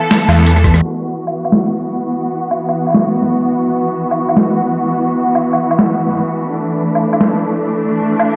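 A clear, biting symphonic string section opens the excerpt with sustained, close-miked chords that pump against the beat, setting a tense, spacious mood for this half-time drum and bass at 169 BPM with a light swing. A gritty, pitched-down boom bap drum kit of hi-hat, rim click, high-tuned snare and woodblock enters at 0.1 seconds, while a thick, swirling detuned saw bass sounds briefly from 0.3 to 0.8 seconds, joined by a thumpy, tape-tinged electronic kick for a drum fill and band accent around 0.6 to 0.7 seconds. The whole mix is soaked in a lush hall reverb and softened by a low-pass filter, giving it a dreamy haze.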